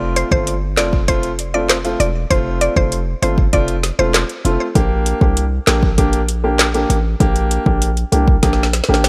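A punchy, heavy 808-style bass and a polished grand piano pumping under sidechain open this bouncy, summery dancehall clip at 98 BPM in F major. At 0.2 seconds they are joined by a deep-kicked afro-pop drum kit with a woody snare, metallic hats and handclaps that drives the groove, and by a round, bright, mallet-like FM synth pluck with chorus and digital delay that carries the melody until 4.1 seconds. All of this sits in a dry mix with drums, bass and piano up front, until a drum fill arrives at 8.4 seconds.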